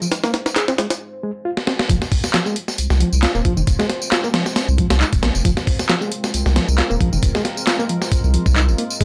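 A dry, gritty hardware recording with light reverb carries this funky breakbeat excerpt at 135 BPM in 4/4, swung on the sixteenths and built around an Ab6 chord. An overdriven, reedy electric piano riff heard through a combo amp with tape echo opens over electronic tambourine and overdriven analog handclaps, while a compressed sampler-style break kit with a thumpy kick and medium-tuned snare rolls through drum fills during a filter-swept build-up and a break. From 0.1 seconds a thick, saturated sine sub bass sits up front and a moody, warbling sawtooth pad holds sustained chords in the background, its chorus and sidechain pumping adding motion, and at 1.9 seconds the drop lands.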